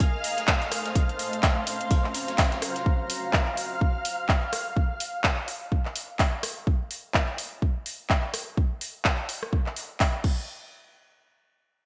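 Piano house at 126 BPM in 4/4, this bittersweet, soulful clip rides a swung sixteenth-note feel and opens on an F7/A chord. Shimmering, vintage string-machine violins hold sustained sawtooth chords high in the register, thickened by ensemble chorus, pumped by sidechain and carried by a filter sweep until they stop at 6.7 seconds. Beneath them, a granular cloud pad adds a blurred, evolving, detuned haze with its own reverb and sidechain pumping, while a gritty, overdriven sampler-style kit sits in the background with a compressed snare and filtered hats. Both the pad and the gritty kit drop out at 2.9 seconds, where the harmony falls away. A punchy electronic kick sits up front alongside a layered house kit of crash, handclaps, bright hats and rim clicks with gated reverb, and both carry the groove through to 10.4 seconds. A lush hall reverb and bright 1980s-style digital production give the clip a polished sheen.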